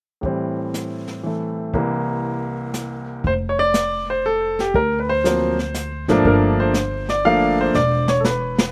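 A swung waltz at 120 BPM in 3/4 opens this jazz piano trio excerpt in F major, with brushed snare, hi-hat and a boomy kick setting a warm, sophisticated mood under an up-front baby grand that carries the melody with a clear, intimate tone, long sustain and audible action noise. At 3.2 s a woody, thumpy pizzicato upright bass joins as the harmony moves from Am7 and C7 into F6, D7alt and Gm7. The dry outdoor sound keeps every part close, and a drum fill at 7.8 s rounds off the passage over E7(no3).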